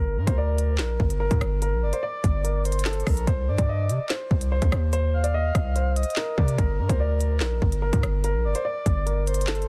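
Ominous and tense, this half-time drill cut at 145 BPM in G minor opens with a dark grand piano melody, carrying audible action noise and a touch of tape echo, over a punchy, hard-hitting 808-style bass that sits up front. A breathy, flute-like synth lead enters at 0.2 seconds as a second line, shimmering with chorus and tape echo, and the electronic drill kit arrives at 0.3 seconds with a hard-clipped kick, woody snare, crisp hats, rim clicks and handclaps. The harmony moves from Gm to Cmadd9 and back, wrapped in digital ambience and a dense, heavily limited modern master.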